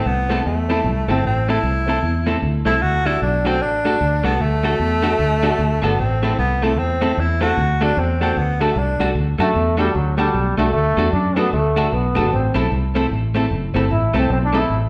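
A live band shares one room here, bathed in a lush studio reverb that gives this cheerful, joyful ska cut from a longer piece an open, airy glow. A breathy tenor saxophone carries the melody up front from the start, its whispered tone, soft attack, scooped notes and vibrato lending an intimate, pop-style sweetness until it drops out at 9.1 seconds. At 9.4 seconds a clear trombone takes over with its own solo, roomy and slightly distant yet still forward in the mix, its light vibrato and scooped notes keeping the mood bright. Underneath, a fingered electric bass sits up front with a round, foam-muted, direct-amped sound, while a clean, compressed, picked electric guitar adds accompaniment touched with tape echo. A mellow, woody upright piano adds boxy stabs in the background, with audible action noise and long sustain, as the lightly swung groove moves between A minor and D major chords.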